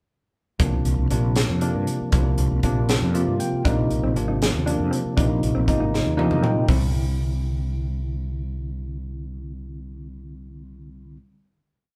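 Recorded as a band playing live in one large studio room with moderate reverb, this short, funky and soaring electric jazz fusion piece moves in 6/8 at 79 BPM in C mixolydian, over C9sus4 and Bb9sus4 chords. A bell-like tine electric piano plays syncopated quartal chord stabs and short fills, and a round fretless bass carries a syncopated riff. A crisp fusion drum kit with a high-tuned snare and punchy kick drives the groove, while from 3.6 s a dark, compressed electric guitar ostinato sits in the background; drums and guitar stop at 6.8 s after a drum fill, and piano and bass hold the final C chord until 11.2 s.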